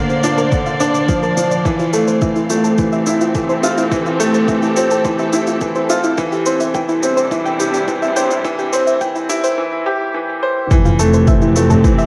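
Hopeful and tender, this is a short cut of piano and strings electronica at 106 BPM in F major, with a straight 4/4 feel and a dark, warm production. A clear, natural baby grand piano sits up front playing a short-sustain riff with digital delay, while a lush studio string section holds expressive bowed chords with vibrato and portamento beneath it. A soft, round synth pluck spins arpeggios in the background, coloured by chorus, sidechain pumping and digital delay, and a filter sweep runs across it through the build-up. Produced electronic shaker and toms, re-recorded in a large room, and a deep, layered, tape-warm kick drive the groove, with a brief break from 9.6 seconds before the drop at 10.7 seconds. At that drop a clear symphonic double bass section enters in the background on a bowed F1 with light vibrato and sidechain pumping, just as the harmony, having moved from Bb through Fmaj7 and C/E, returns to Fmaj7, all set in a moderate scoring-stage reverb.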